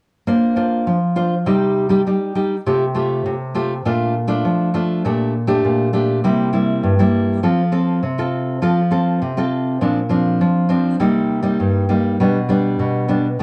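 A warm, up-front solo nylon-string guitar with fresh strings, audible finger squeak and moderate studio reverb plays a sunny, playful samba at 101 BPM in Bb major, fingerpicked in a classical style from 0.3 to 13.4 seconds through lush add9 and seventh chords like Bbadd9, Cm, Bbmaj7 and C7 in this short cut from a longer piece.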